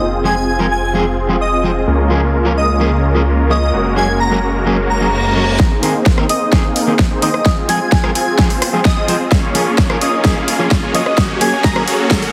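Festival progressive house at 129 BPM in Db major, anthemic and triumphant, this excerpt opens on huge, detuned supersaw chords and a thick, menacing saw bass, both pumping against the sidechain, while an airy, dreamy lead with chorus and dub echo floats above a twangy, slightly broken-up electric guitar roughened by 12-bit sampler grit. The bass drops out at 5.6 seconds as a very quiet reverse cymbal and riser, entering at 4.8 seconds, lead into a punchy, up-front electronic kick and an overdriven big-room kit with a huge snare, launching a build-up with a drum fill and a low-pass filter sweep on the supersaws. The mix sits in a lush hall reverb with a heavily compressed, radio-ready sheen over a cycle of Fm, Db6, Gbadd9 and Abadd9.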